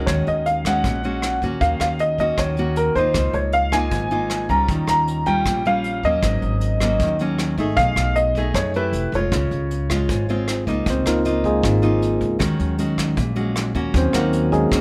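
A straight 4/4 bossa nova groove at 156 BPM in Db major comes from a vintage brush drum kit with a punchy kick, hi-hat and rim click in a small, pumping room. Alongside it are a woody, growly pizzicato upright bass and a fingerpicked, classical nylon-string guitar up front. A present grand piano with long sustain carries the relaxed, sunny melody until 10.4 seconds, and at 10.9 seconds a barky, lightly overdriven tine electric piano through a combo amp takes over with a solo, all under light reverb in this short cut from a longer piece that moves through chords such as Ebm7, Db69 and Ab9sus4.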